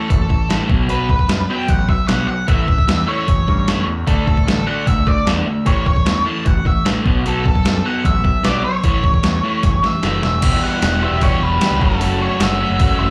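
Indie rock at 151 BPM in a straight 4/4, carefree and upbeat, heard as if from a live gig through the venue's PA with club reverb. A dark, fuzzy octave lead guitar with slapback echo and digital delay carries the melody over a crunchy, up-front overdriven guitar riff, a growling, punchy overdriven bass and a thumpy, tape-toned 8-bit drum machine with a medium-tuned snare, cycling through A, B and D chords. A drum fill at 9.6 seconds leads into a new section at 10.4 seconds, where a sludgy, chorused guitar riff joins in the background as the harmony moves to Em and F#m7.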